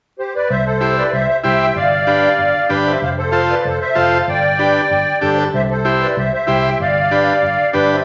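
A straight 4/4 pulse at 191 BPM drives this festive, joyful cumbia in C major, cut from a longer piece. The musette accordion carries the melody from 0.2 seconds, its reedy, shimmering tone sitting up front with a boxy small-room quality. The fingered electric bass joins at 0.5 seconds, dark, round and foam-muted, with a direct, amped character low in the mix. The combo organ enters at 0.8 seconds with vintage, buzzy yet clean accompaniment placed close in the mix. The harmony moves through C, G7, F and G before returning to C and G7. A large studio reverb adds a generous wet space, while vinyl crackle and a dulled top end give the recording an aged sheen.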